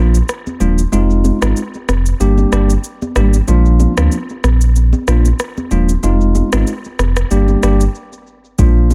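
An echo-heavy digital ambience with a faint mains hum surrounds this joyful, sunny afrobeats fragment, cut from a longer piece and heard as a break until 8.6 seconds. A bright, bell-like tine electric piano sits up front beside a full, mellow sine sub bass with its octave, moving through Bb, Fm7 and Gm with a light swing on the 16ths. An electronic afro-pop drum kit brings a tape-warm deep kick, rim click and shaker from 0.1 seconds, and very quiet high-tuned congas, played with soft hands, ring close and dry from 0.5 seconds.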